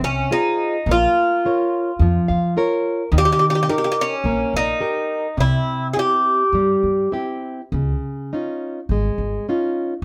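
Recorded live in one room with moderate studio reverb, this mournful, longing fado-style ballad excerpt moves at a rubato 105 BPM in 4/4. A mellow, metallic, double-strung Irish bouzouki picks the melody up front until 7.1 seconds, and a fingerpicked classical nylon-string guitar accompanies and adds a fill at 2.0 seconds. A woody, thumpy pizzicato upright bass anchors the low end up front as the chords move from Fm through Bbm, Eb and C to Dbadd9.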